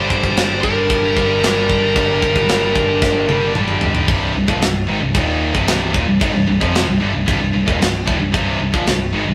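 Driving straight 4/4 at 113 BPM in C minor, this epic, heavy metal fragment opens with a dark, distorted lead guitar singing up front until 3.5 seconds over two bright high-gain rhythm guitars and a double-tracked, overdriven stack guitar churning riffs in the background, a growly, punchy picked bass, and a tight, mid-forward drum kit whose fill from 3.0 seconds carries the move from G minor to C minor at 4.1 seconds, all captured in a rough rehearsal-room sound with moderate reverb.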